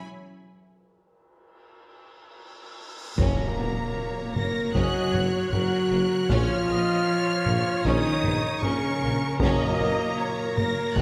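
Adventurous and triumphant, this epic orchestral film-score passage at 77 BPM opens in E major with a smooth, vibrato-rich violin melody over a focused second violin line in the background, warm sustained French horn chords and rich distant cellos. A huge, dark cymbal swell then bursts into an impact at 3.2 s, where the music lifts to F# major and brings in punchy trombone chords, a dark solo trumpet's stabs, a very quiet double bass section, a mellow tuba, compressed and saturated taiko drums and round soft-mallet timpani. Distant violas, heard briefly at the very start, return at 4.7 s, all within a wet scoring-stage reverb.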